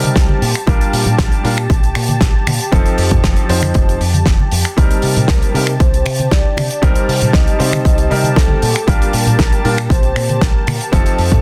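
A straight 4/4 nu-disco groove at 117 BPM opens this sleek, sensual clip, with a punchy, overdriven electronic kick arriving at 0.2 seconds and sitting up front, its layered body carrying the reverb of a large room. Beneath it, a damped 70s kit adds finger snaps, hi-hat and a dry, medium-tuned snare with a rolled-off top and soft clipping, while congas murmur close yet in the background. A fingered electric bass with an envelope filter gives the low end a round, punchy, amped character, and a clear grand piano plays intimate accompaniment with audible action noise, its chords pumping against the kick and touched by slapback echo. A lush, thick sawtooth pad of detuned unison voices holds sustained chords with slow attack, long release and chorus, moving through Bb6, F7 and Cm7 before returning to Bb6. At 4.8 seconds a dark, full, octave-layered synth lead enters with the melody, blending triangle, sawtooth and sine tones with a sub octave, its warm, rounded sound shaded by chorus, tremolo, vibrato and analog delay. 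The dense, heavily limited modern master sets the parts in light studio reverb.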